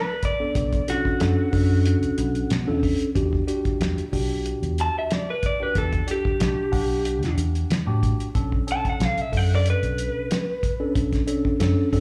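An electric guitar through a small old amp and a mellow tine electric piano open this smoky, mournful soul blues fragment together, cut from a longer piece and set in B minor at 92 BPM with a straight-eighth 4/4 feel and a light swing on the sixteenths. The guitar carries the melody with a slightly broken-up, compressed, picked tone and a slapback echo, sitting up front until it stops at 10.9 seconds. The electric piano supplies clean, direct accompaniment colored by a phaser, moving from Bm7 to Em7 and back to Bm7. A cloth-damped drum kit joins almost immediately with a thuddy, dark sound, a fat snare, a tight kick, a rolled-off top and its own slapback echo, while a vintage muted fingered electric bass arrives at 0.6 seconds, round, punchy and foam-muted, the most prominent part in the blend. The whole performance comes across as a live gig heard through a venue's PA, wrapped in club reverb.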